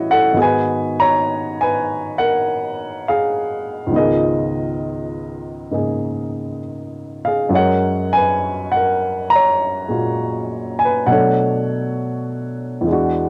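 A slow swung 4/4 at 67 BPM carries this tender, romantic jazz ballad excerpt in F# major, where a dark, woody upright piano plays alone and up front with a cassette-tape tint, moving from G#m9 through C#13 and F#maj9 to Bm7 over roughly 13.3 seconds in a small, damp booth on a home recording.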